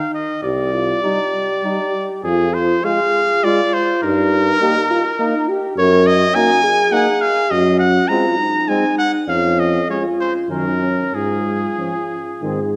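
Noble and stately, this brass quintet excerpt moves in a rubato 3/4 at roughly 92-105 BPM, starting in Eb major and shifting to Db major at 5.8 s. A bright trumpet carries the melody up front with light vibrato. A dark, soft-attacked French horn supports it from a distance, and a warm tuba enters on the bass at 0.4 s. From 1.0 s a mellow flugelhorn adds a second line and a smooth-topped trombone fills in the accompaniment, both sitting in the background. The whole ensemble is set in the lush reverb of a scoring stage.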